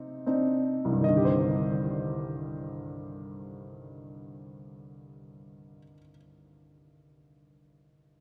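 A warm, worn baby grand piano opens on a C minor chord with an added ninth, slowing at the start before unfolding a reflective, dark solo in rubato 6/8 at 26 BPM, ranging from C2 to Eb5 and sitting present and up front within a long, wet church reverb, in a short classical fragment cut from a longer piece that runs for 8.2 seconds.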